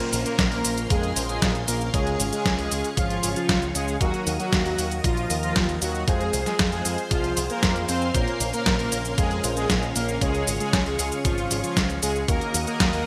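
Cut from a longer italo disco track, this danceable, bittersweet passage opens with a bold, fat, detuned analog synth brass melody up front, over lush sawtooth string-machine chords colored by phaser and ensemble chorus, clean tine electric piano stabs in the background, and a detuned 8-bit drum machine playing a medium-tuned snare, hi-hat and cabasa in gated reverb, joined at 0.1 s by a punchy picked electric bass through an envelope filter and at 0.4 s by a thumpy electronic kick, within a bright 1980s-style digital production bathed in a moderate, lush hall reverb.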